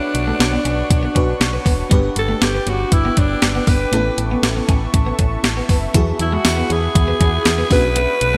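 Nostalgic and dramatic, this 1980s-style pop excerpt at 119 BPM puts a raspy, gritty alto saxophone with delay up front over a thumpy, overdriven 12-bit drum machine, a punchy round FM bass, a dreamy chorused FM electric piano with tremolo, a glassy FM pad, a bright twangy twelve-string electric guitar riff and a very quiet jingly tambourine from 6.5 to 7.6 s, moving through Bmadd9, G, Aadd9 and Eadd9 in a bright digital production bathed in lush hall reverb.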